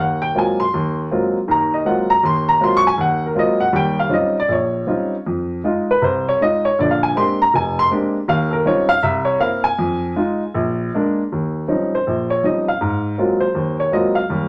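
A baby grand piano plays alone from the start in this swinging, warm-hearted solo jazz passage, cut from a longer piece, at 160 BPM in a loose, rubato 4/4 with Eb mixolydian colour. Its natural, up-front tone has short sustain and moves through rich changes such as Ab13, Eb13 and Fm7, set in a wet studio reverb across 14.5 seconds.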